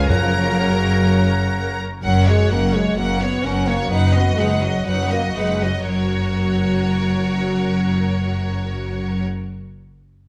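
A lively, cheerful classical-period orchestral movement in F# major, cut from a longer piece and moving quickly with a rubato feel before slowing between 1.1 and 5.9 seconds. A focused, vibrato-rich violin section carries the melody over a distant second violin line, lush violas, a clear cello section and a soft-attacked double bass section, while mellow French horns hold tight, present sustained chords. In the opening 1.8 seconds a vintage-toned oboe, a background clarinet and a present bassoon add color, round, very quiet timpani sound briefly near the start, and the whole ensemble sits in a stone room's reverb.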